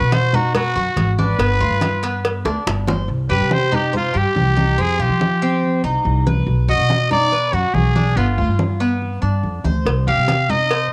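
This danceable, nostalgic slice of Cuban son and guajira, cut from a longer piece, has the homey feel of a cassette recording, with light reverb and a touch of studio ambience. A raspy, growling trumpet carries the melody up front, while a picked tres with metallic double strings plays arpeggios; both have a cassette-tape coloring. A woody, thumpy upright bass anchors the low end, low-tuned congas run throughout, and tight, high-tuned cowbell and bongos play until 3.0 seconds, overlapping a drum fill that begins at 2.5 seconds, then return at 9.9 seconds.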